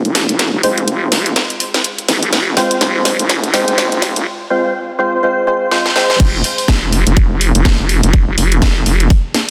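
Swung sixteenths at 124 BPM drive this swaggering, aggressive bass house passage in F minor, cut from a longer piece. Over an Fm chord, hollow, organ-like stabs with chorus and delay sweep through a filter during the build-up, while a nasal, wobbling vowel-sweep bass pumps underneath and a garage drum kit with a cracking snare, hi-hat and crash rolls through fills. At 6.2 seconds the stabs stop and the drop hits, with a tight, up-front electronic kick joining the bass and kit in a lush hall reverb under a dense, heavily limited master.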